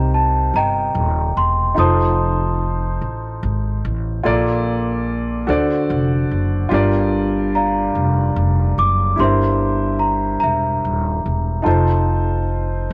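A large celesta, a concert grand piano and an upright bass open together on this short, slow gospel passage in a straight 6/8, and its mood is jubilant and hopeful. The celesta carries the melody in its upper register, sounding bell-like, sweet and ringing, with the firm strike of hard felt hammers. It drops out at 3.8 seconds and returns at 7.6 seconds to finish the phrase. The piano supplies intimate accompaniment through the whole passage, with deep bass, long sustain and the sound of its action audible up close. The pizzicato upright bass sits up front alongside the others, woody and growly with a bright steel-string edge, as the harmony moves from Cm7 and F7 through Bbmaj7, D7, Gm7 and C7/G before coming back to F7. Light reverb and a small-room ambience keep the sound close and natural.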